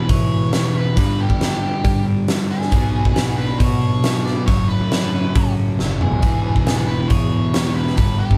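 Quiet-loud alternative rock at 137 BPM in a straight 4/4, this short cut from a longer piece feels bittersweet and restless as it moves from E through G, B minor and F# minor before landing back on E at 6.2 seconds. A big acoustic rock kit sits up front, its fat snare and punchy kick ringing in a roomy space while hi-hat and toms fill out the beat, with a drum fill at 5.8 seconds. Beneath it, a sludgy overdriven guitar grinds out a picked riff in the background, and a fuzz-laden picked bass, amped and punchy, anchors the low end. A dark octave-fuzz lead guitar carries the melody between G4 and D5, while a very quiet twelve-string electric adds bright, twangy, compressed clean arpeggios. The band sounds like it is playing live together in a small room with moderate reverb.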